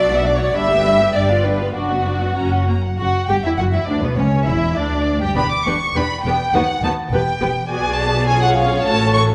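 A dark, vibrato-laden first violin section carries the expressive melody up front, with a lush second violin section beside it on the second line, in a restless, stormy classical-period movement for string orchestra in 2/4. A focused viola section fills in the accompaniment, while an intimate, soft-attack cello section and a close double bass section bow the bass line together. The passage is cut from a longer piece and moves into a new section at 3.0 seconds, all set in the generous reverb of a recital hall.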